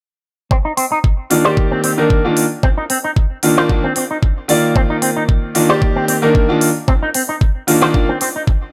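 Nu-disco at 113 BPM in C minor with a light swing on the sixteenths, this groovy, sleek excerpt sits on a Cm11 chord and opens at 0.5 seconds with a knocking electronic kick and a dark, clean guitar riff through an envelope filter, coated in lush chorus, low-pass filtering and digital delay. Crisp electronic hi-hats join, and at 1.3 seconds a clear, boxy grand piano enters with short-sustain accompaniment, pumping through sidechain compression and carrying its own low-pass filter and delay. Kick, guitar and piano sit up front in a light reverb.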